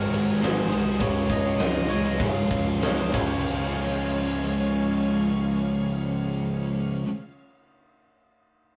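In straight 4/4 at 92-106 BPM and slowing through the first 3.5 seconds, this hazy, blissful shoegaze and dream pop fragment in Db major sets a biting, up-front overdriven guitar riff over a thick, dark fuzz guitar riff and a growling overdriven picked bass, while a huge arena drum kit with a fat snare and punchy kick, joined by a jingly, very quiet tambourine, drives into a drum fill at 3.1 seconds, a twangy clean guitar arpeggiates until 4.3 seconds, and a lush sawtooth string machine with ensemble chorus and a distorted fuzz lead melody hover in the background, all in a rough rehearsal-room sound with wet studio reverb as the chords move from Ab7sus4 to Dbmaj7 to Db.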